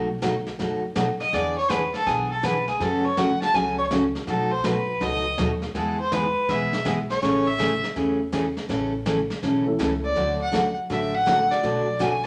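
Playful and down-home, this western swing country excerpt in A major moves at a swung 163 BPM, with a bright, full-bodied picked acoustic guitar up front and a woody, growly upright bass under a brushed vintage drum kit with a punchy kick, while a clear, biting, nasal fiddle takes the solo from 1.2 seconds and a detuned, jangly honky-tonk upright piano joins briefly at 9.7 seconds, all bathed in a roomy studio reverb.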